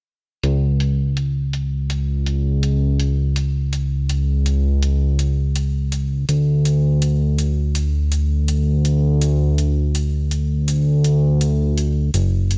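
A straight 4/4 pulse at 82 BPM drives this moody synthwave excerpt, with an electronic hi-hat ticking under a low-pass filter and studio reverb, its sampler-style tone carrying a tape-warm quality. Up front sits a fat analog synth bass, a detuned, saturated blend of sawtooth and square waves with a nasal, evolving character, a fast attack and long sustain, moving between F#1 and D2 while a filter sweep runs across it from 0.4 to 12.6 seconds. The overall production is brilliant and 1980s-style digital, with little ambience around the bass.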